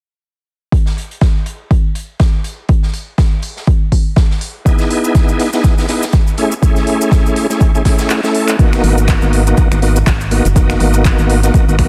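This deep, late-night deep house piece at 122 BPM opens at 0.7 seconds with a punchy, up-front electronic kick and a faint airy street-band kit of hi-hat and medium-tuned snare, joined at 1.0 seconds by a layered electronic kit of snaps, claps and smooth hats, all swung on the 16ths. At 4.7 seconds a bright, shouting tonewheel organ enters with lightly overdriven stabs through chorus vibrato, fast rotary speaker, tape echo and sidechain pumping over Emaj7/B and Amaj7 chords, while grainy maracas sit in the background. After the kick drops out briefly for a drum fill, a hollow, dark, organ-like FM bass arrives at 8.8 seconds with tube saturation and pumping on G#m9, all in a dense, heavily limited modern mix.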